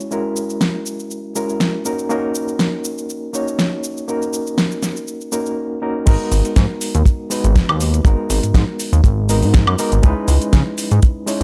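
Groovy and sleek, this nu-disco clip opens with a gritty, reedy electric piano pulsing with fast tremolo and sidechain pumping over F#7 and D#m7 chords, joined by an overdriven pop drum kit of fat snare, metallic hats, shaker, woodblock and crash, before the drop at 6.1 seconds brings in a tight, dry kick drum and a glossy, nasal chorused synth bass under G#m7 and C#m7 chords, all kept close and dry with little reverb.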